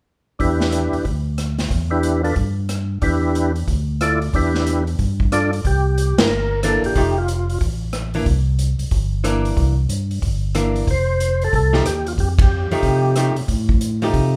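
Opening at 0.4 seconds with a gritty, overdriven tonewheel organ melody spun through a slow rotary speaker over a fat, key-clicking organ bass line and a dark-cymbaled vintage drum kit, this soulful, bluesy soul jazz organ trio swings briskly at 184 BPM through Em7 vamps into a C9 and F9 section, where a dark, clean, hollow-body archtop guitar joins at 6.2 seconds and the band hits accents at 6.1 and 12.3 seconds in a moderate studio room.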